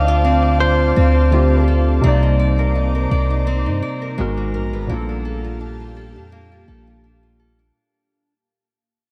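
A deep, boomy 808-style bass sits up front in this moody, sensual contemporary R&B piece, cut from a longer work and moving at 84 BPM in 4/4 with a light 16th-note swing in C dorian. Analog keys built from detuned square and sawtooth tones carry the accompaniment with a filter sweep and chorus, while a nylon-string guitar fingerpicks classical-style arpeggios through a delay, its fresh strings giving off the odd finger squeak. An ethereal, airy pad holds evolving sustained chords above, mellow in tone, with ensemble chorus and its own reverb. A clean, compressed electric guitar, recorded direct, plays a brief picked melody with spring reverb and delay that ends at 1.6 seconds, and a warbling vintage FM bell lingers, barely audible, until 1.9 seconds. The harmony moves from Dm7 to Cm9, then through Abm9 to Gm9/Bb, as the passage fades out from 2.0 seconds in a light reverb.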